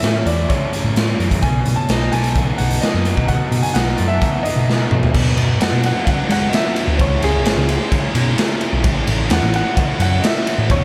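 A straight 4/4 indie rock groove, wistful yet carefree, rides on a raw garage drum kit that sits gritty and punchy up front in a pumping stone room, alongside a round, dark hollow-body bass and a biting, double-tracked overdriven guitar riff, while a woody upright piano with audible action noise and analog delay carries the melody and takes a solo from 5.1 seconds after a drum fill, within a dreamy mix soaked in huge ambient reverb in this excerpt from a longer piece.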